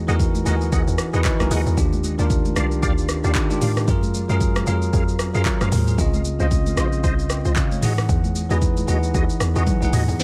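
A hollow, bouncy log drum bass anchors this short amapiano cut, its FM tone carrying a noise layer, a fast attack and a mellow decay. At 114 BPM in 4/4 with a swung sixteenth feel, the mood is soulful and warm, built on lush major-ninth chords moving from Emaj9 through Ebmaj9, Gbmaj9 and Dbmaj9 before returning to Emaj9. A clean, bell-like tine electric piano sits up front as accompaniment, playing a fill from 0.2 to 1.8 seconds. A reedy tonewheel organ adds stabs, colored by chorus vibrato, key click, a slow rotary speaker and tape echo. The electronic afro-pop drum kit is overdriven and close, with a deep kick, metallic hats, handclaps, rim clicks, shaker and toms, while high-tuned, ringing acoustic congas stay in the background. A drum fill arrives at 9.7 seconds, and a downlifter sweeps in at 10.2 seconds, all inside a digital ambience.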